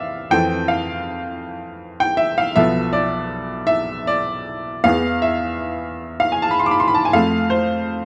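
A dark production sets a clear, woody upright piano up front in a moderate recital hall, its reverb lingering for about 1.5 seconds. This short fragment of a longer romantic nocturne moves at a slow 53 beats per minute in dotted quarters, with a 12/8 metre pulled about by expressive rubato. The mood is mournful and yearning, as the harmony moves from Fmaj7 through Bm7b5 and E before settling on F near 7.1 seconds. Spanning B1 to D6, the solo piano's smooth, vintage tone carries the whole passage from 0.0 to 8.1 seconds.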